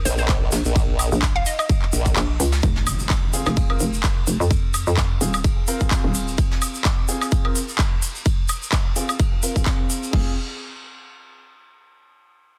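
A punchy electronic kick drives this aggressive, swaggering bass house excerpt in F minor at 128 BPM with swung 16ths, sitting up front beside a hollow, bouncy FM bass that knocks from the opening until 6.4 s, while a chorused formant-sweep wobble bass and a detuned square-wave pluck with tape echo flash by in the first two seconds. Crisp hats, handclaps, crash and woodblock from a tape-warm big-room dance kit ride over a brushed ride and snare in the background and a grainy, bright tube shaker, with the kick dropping out just before a very quiet impact lands on the Fm chord at 2.6 s. From there, long-sustaining grand piano stabs with tape echo and sidechain pumping move through a filter sweep, all set in a small room under a dense, heavily limited master.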